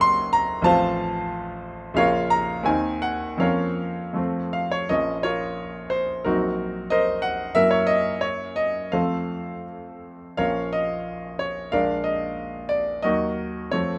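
Passionate and brooding, this romantic character piece for solo piano unfolds in Bb minor at a flexible 78-96 BPM, its 2/4 metre pulled and stretched by rubato. The grand piano alone carries the music from start to finish, its tone clear and smooth with a vintage colour and a short sustain. Sitting up front in a light reverb, it spans a broad register from the deep Gb1 in the bass to Db6 at the top. The opening section moves from Gb through F/A to settle on Bb minor, reaching an F chord before a second section begins at 4.9 seconds. That later passage darkens through Cm7b5/Bb and Gb7, then turns via Bb7 to arrive on Eb minor at 13.0 seconds, shortly before this cut from a longer piece breaks off.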